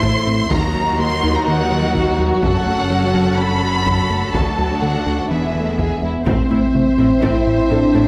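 A mellow, tight French horn section stands out most, entering at 5.6 seconds with sustained chords that lend a classical weight to this tense, futuristic hybrid of orchestral and electronic film scoring. Beneath it, a violin section carries the melody with lush vibrato and a soft attack, joined by a second violin line that stays smooth and even. Violas with expressive portamento, a rich cello section and a clear, focused double bass section fill out the background. Electronic layers drive the texture: a very quiet detuned sawtooth pluck plays arpeggios with a filter pluck, moving notch and chorus, while a dark, round analog bass riff runs underneath. Hard-stick taiko drums with a vintage, band-limited sound play in the background, and at 6.3 seconds a bright, very quiet trombone section and a deep, soft dub sub bass join as the harmony settles back onto A minor. Moderate scoring stage reverb gives the ensemble a cinematic sense of space in this excerpt from a longer piece.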